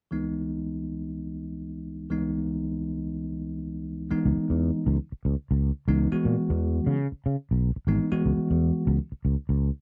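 A dry, close 1970s-style studio sound frames this intense, funky jazz fragment at 120 BPM in C# minor with a light swing: a bright, bell-like tine electric piano opens alone on a C#m9 chord, a growly, punchy fretless electric bass enters up front at 4.1 seconds, and the piano stops at 9.0 seconds while the bass carries on to 9.7 seconds.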